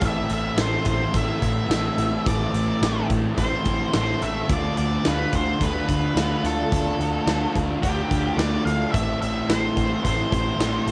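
A home cassette recording with light reverb carries this dreamy, melancholic fragment of shoegaze and dream pop rock in A minor at 108 BPM, where a dark, picked octave-fuzz lead guitar carries the melody through distortion, cassette tape and tape echo, over a thick fuzz guitar riff bathed in lush chorus, a lo-fi raw garage guitar riff trailing reverse reverb, a round, foam-muted overdriven bass, and a big, natural-sounding acoustic rock kit with a punchy kick, medium-tuned snare and hi-hat, as the chords move from Am to Dm at 4.5 seconds and back to Am at 8.9 seconds.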